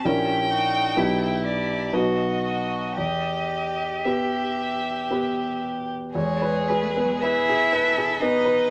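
In a rubato 3/4 at 54-66 BPM, this slow, elegiac movement for piano quartet in E minor unfolds with a yearning pull. A clear, distant violin with vibrato sings the melody, while a second violin and a cello, both rich and focused, carry bowed supporting lines beneath it. The up-front piano adds a warm, vintage tone with deep bass in a wet studio reverb, and the harmony moves from a diminished opening through E minor to an E major chord at 6.1 seconds in this brief fragment of a longer piece.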